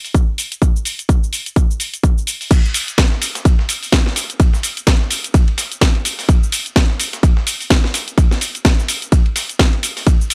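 A dry, gritty recording with transformer saturation and little reverb opens this energetic, bittersweet house excerpt, cut from a longer piece and set in 4/4 at 127 BPM with a 58% swing on the sixteenths. A house drum kit sits up front from the start, its cracking snare, hi-hat, shaker and crash cymbal forward in the mix, and a punchy, layered electronic kick drum joins it a moment later, also up front. Both kick and kit carry a tape-warm character from being re-recorded in a small room. At 2.5 seconds the drop arrives and a compressed, sampler-style breakbeat kit slips in beneath them, its medium-tuned snare and ride cymbal high-pass filtered and kept low. From there the three drum parts drive together through to the close at 10.3 seconds, giving the groove a crunchy, swung momentum.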